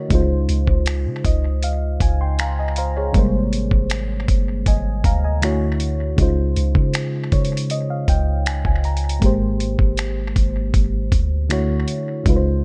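Contemporary R&B with a tender, smooth mood, cut from a longer piece, where a mellow FM electric piano with chorus and a noise layer plays round, full-bodied chords over Dbmaj7, Abmaj7 and Dmaj7, adding fills at 0.9 and 6.9 seconds. A soft 808-style bass supplies a deep, sine-like low end, while a dusty soul sampler-style kit of finger snaps, hi-hat and a thumpy kick sits up front with a gritty, compressed punch. The mix is dry yet echo-heavy.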